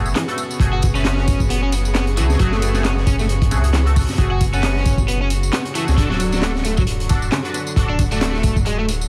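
A raw, energetic breakbeat fragment in F# minor at 134 BPM opens with three parts at once. Reedy, gut-toned chamber strings hold sustained chords that pump against a sidechain. A nasal, band-passed sawtooth chord stab runs through phaser, ensemble chorus and dub echo, and a thick, deep triangle-shaped sub bass sits up front with tube saturation. Within a fraction of a second, a layered electronic garage kit adds handclaps, ride cymbal and tambourine. At 0.2 s a crunchy acoustic break arrives, its punchy kick, high-tuned snare and hi-hat sounding gritty and dark in a small room as the loudest drums in the mix, while an overdriven, picked electric guitar enters alongside with a bright riff coloured by harmonic tremolo and dub echo. The sixteenths carry a light swing, and the harmony rests on F#madd9 before moving to D at 6.0 s, with the stab dropping out shortly before the close. A dense, heavily limited master with vinyl crackle and studio ambience gives the whole a loud, dusty finish.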